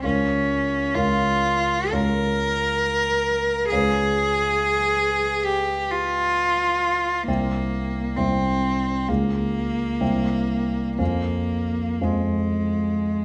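Flexible rubato pulls the uneven 4/4 beats around a slow 66 BPM in this elegiac, solemn romantic classical duo, tuned to A4 = 443 Hz and cut from a longer piece. A rich, bowed solo cello sings the smooth, even melody with vibrato between Ab3 and Bb4, while a dark, mellow grand piano with a vintage character and audible action noise supplies intimate accompaniment from C2 to Ab5. Both instruments sit up front in a wet recital hall reverb, and the harmony moves from Bbm/Db through Db7 and C before settling on Fm at 11.0 seconds.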